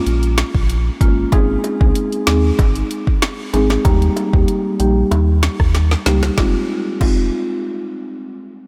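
Light reverb and a digital ambience frame this short, sultry and tough dancehall excerpt, which moves at 95 BPM in a straight 4/4 in F minor. An electronic, produced drum kit sits up front, with a deep kick, woody snare, dark hi-hats, rim clicks and crash cymbal, while a round, sine-like sub bass with a fast attack holds sustained, mellow notes between F1 and Eb2. At 1.0 seconds a vintage, band-limited marimba played with medium mallets on rosewood bars enters up front, passing through a low-pass filter with a filter sweep. Tight, high-tuned acoustic bongos, struck with hard hands in a small room, follow in the background. The harmony moves from Bbm7 through Ab and Eb. A drum fill at 5.7 seconds leads into a new section at 6.4 seconds, where the chord shifts to Fm7.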